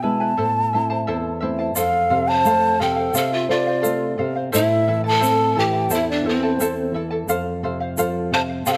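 A breathy, expressive large quena with a woody vibrato carries the melancholic, wistful melody of this Andean folk fragment in an unhurried 2/4, over a shimmering fingerpicked charango and a dark, thumb-plucked nylon-string guitar moving between Am and F, before a chiffy bamboo pan flute adds a second line and a grainy egg shaker joins, both at 1.8 seconds, all captured close and detailed in light reverb.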